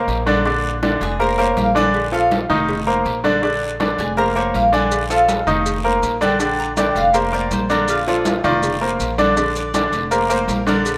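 A rough home demo mix bathed in a lush hall reverb carries this sunny, danceable salsa excerpt at 162 BPM in Bb major, cycling through Bb, Fsus4, Bbmaj7 and F7sus4. A metallic, picked Cuban tres with double strings takes a solo over the full 11 seconds, while a brilliant, polished upright piano sits up front with woody, short-sustain accompaniment and a dark, thumpy pizzicato upright bass on gut strings anchors the low end. Ringing congas sit distant in the background alongside a raspy guiro and a very quiet, round, low-tuned cowbell, with grainy, mellow maracas joining at 4.9 seconds.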